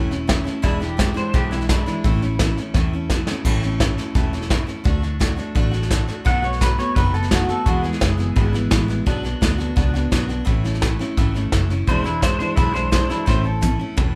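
Easygoing and nostalgic, this short cut from a longer honky-tonk and classic country piece moves at a brisk 171 BPM in a straight 4/4 feel, set in A major with the tuning a touch under standard. A bright, full-bodied jumbo acoustic guitar is picked throughout as accompaniment, while a dark, round, foam-muted vintage electric bass adds a punchy, amped low end. Up front in the mix, a soft brush drum kit with a punchy kick and medium-tuned snare carries the groove, with fills around 2.7 seconds and again at the close. A twangy, clean pedal steel guitar, played with fingerpicks and slide, slips in for brief second-line phrases with volume swells, first at 0.6 seconds, then near 6.3 and 11.9 seconds. The chords wander from A through D, B7, E and Bm before settling back home, and the band sounds as if it is playing live together in one large studio room with moderate reverb.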